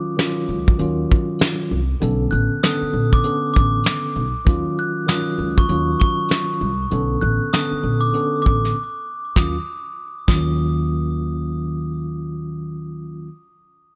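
A mellow tine electric piano opens this dark, tough boom-bap hip-hop excerpt in Eb minor at 98 BPM, its clean tone colored by cassette tape and filtering as it moves between Ebm9 and Bm9 chords with a swung 16th-note feel. A soft brush drum kit with a fat snare and tight kick sits up front beside a woody, thumpy pizzicato upright bass, while from 2.3 seconds a glockenspiel struck with soft plastic mallets adds a bell-like, ringing melody high in its range, filtered and touched with delay in a boxy small room. The drums stop at 10.5 seconds, leaving glockenspiel, bass and electric piano under a studio reverb.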